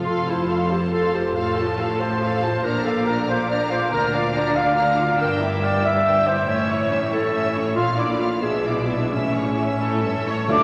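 An up-front, mellow clarinet carries a second line through this stormy, restless orchestral fragment in F major, set in a rubato 6/8 at 93 BPM. A clear, distant violin section sings the melody high above, while a rich violin section, lush violas, a bright chamber cello section and smooth double basses fill out the harmony and bass over chords moving from F through Bb to a tense Em7b5/G before settling on A. A soft-attacked oboe slips in at 9.8 s, and at 10.5 s an airy flute section, a vintage-toned bassoon, a tight horn section in the background and round, dry timpani join just as the passage is cut off, set in a wet church reverb.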